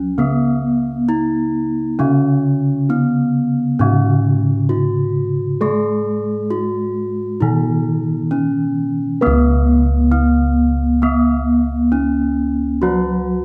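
This Javanese gamelan excerpt opens with three bronze parts sounding together from the first moment, setting a shimmering, serene mood at an unhurried 66 BPM in a straight 4/4, tuned to a slendro scale on Db. The melody metallophone rings out up front with a dry, full, close-miked tone struck by a wooden mallet. Beneath it, a second metallophone plays the accompaniment with a horn mallet; its paired tuning creates shimmering beats, and it sits in a boxy small room with a warm glow. The bossed gongs carry the bass, their round, bright, airy tone pulsing with a beating resonance as they reach from deep Db2 up to high notes. A moderate stage reverb lets the bronze ring hang in the air through this single unbroken passage, which runs for 13.4 seconds as a section cut from a longer piece.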